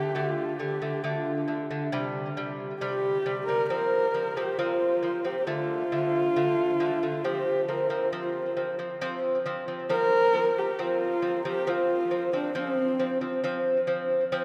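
Mongolian traditional folk with a galloping, proud spirit, heard as a short passage cut from a longer piece and set in a vast, echoing cathedral-like space. Up front, a single bowed horsehead fiddle carries the melody in a dark, husky, woody voice, shaped by vibrato and portamento. Alongside it, a mellow, delicate fingerpicked lute with gut and double strings plays arpeggios through a tape echo, ringing on alone after the fiddle stops at 13.4 seconds.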